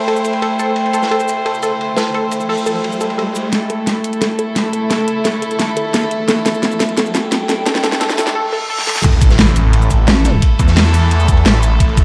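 A snarling, distorted saw bass and a knocking electronic kick slam in at the 9.0 s drop of this tense, futuristic dark drum and bass excerpt, with a heavy, pulsing wobble bass surfacing at 10.1 s. Before that, reedy gut-string chamber strings, a warbling lo-fi pad and a round, detuned analog pluck arpeggio pump through a filter-swept build-up driven by a dubstep kit with a huge snare and metallic hats. A gritty breakbeat kit plays in the opening seconds, drops out for the build-up and returns at the drop, while background risers and a reverse cymbal lead into an impact, the mix soaked in dreamy plate reverb.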